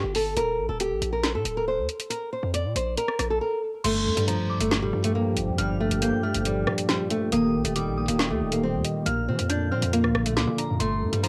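Recorded at home on cassette with light reverb, this tense, dark drill excerpt at 138 BPM in a half-time feel in G minor sets an up-front, fingerpicked nylon-string guitar melody over a heavy, aggressive distorted 808-style bass and an electronic drill kit with a woody snare, crash, hi-hat and rim click; after a brief break at 3.4 seconds, a mellow tine electric piano and a pure, warbling FM synth bell with chorus, phaser and tape echo join at 3.8 seconds, followed by a deep, detuned analog pad at 4.8 seconds over Gm7, Eb and Bb chords.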